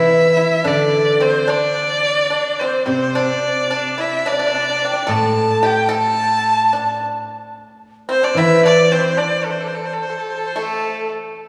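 A single bowed erhu leads this wistful, graceful fragment of a longer Chinese traditional chamber piece, its bright, focused tone sitting up front as it carries the melody with vibrato and portamento. Alongside it, a very quiet low xiao adds an airy, bamboo-like second line, end-blown and tongued with gentle vibrato. A fingerpicked pipa supplies another second line in a lower register, its dry, percussive attack contrasting with the bowed voice. The steel-string zither, also fingerpicked and placed up front, provides ringing, silvery accompaniment in the low range before dropping out at 10.0 seconds. The ensemble moves in a rubato feel around 109 BPM in 4/4, in an A yu mode, and the whole is heard through the lingering reverb of a concert hall or church.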